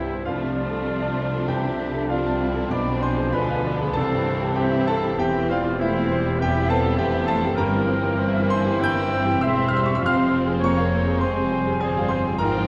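Lyrical and passionate, this excerpt from a romantic classical movement for piano and orchestra moves at a rubato 98 BPM in 4/4, with a clear, up-front concert grand carrying the melody alongside lush, distant violins that also carry it, while an airy flute, a smooth-topped oboe, a warm clarinet and a second, even violin section weave secondary lines above expressive violas, dark, soft-attack French horn chords, rich cellos and focused double basses, all set in a reverberant concert hall as the harmony turns from C major to F minor at 7.6 s.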